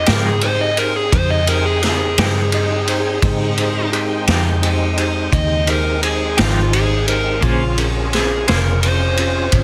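A slow, straight 12/8 sway sets the pace for this mournful, soulful minor blues, cut from a longer piece. A dark, overdriven slide guitar carries the solo throughout, with a raw, saturated garage drum kit of punchy kick, snare and ride sitting up front in a small room. A round, foam-muted vintage bass plays the low line, while a tonewheel organ holds full, lightly overdriven sustained chords through a slow rotary speaker with chorus vibrato and audible key click. Filling the middle are a barky electric piano, overdriven through a combo amp with medium tremolo, and a clean, picked electric guitar with tremolo that drops out at 8.7 seconds. The harmony rests on Fm9 before moving to Bbm9 at 7.4 seconds, all in a dry, dense, heavily limited modern master.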